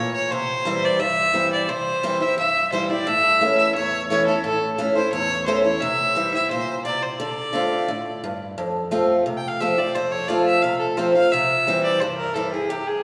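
This bluegrass excerpt has a driving yet lonesome mood, moving at a brisk 174 BPM in a straight 4/4. A single bowed fiddle carries the melody up front, its rich, smooth and even tone touched with light vibrato. Beneath it, an old ladder-braced acoustic guitar picks the accompaniment with a dark, boxy character. Both parts play throughout. The fiddle takes a featured solo from 8.6 seconds, as the harmony shifts from a C, A, C and Dm7 progression to F and then back to C. The recording sits in a church or concert hall, where a lush reverb with a long tail gives the performance a spacious, lingering sound.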